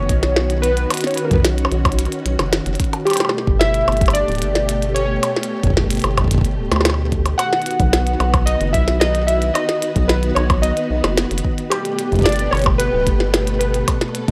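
A rubbery, hollow square bass bounces up front beneath the clicky hats, tiny snare, percussion blips and toms of a glitchy drum kit and a deep electronic kick, while warbling lo-fi synth keys carry a nostalgic melody through chorus and dub echo over silky string-machine chords, and a very quiet flickering grainy texture joins at 8.1 s in this playful IDM excerpt with a rough home-demo sound.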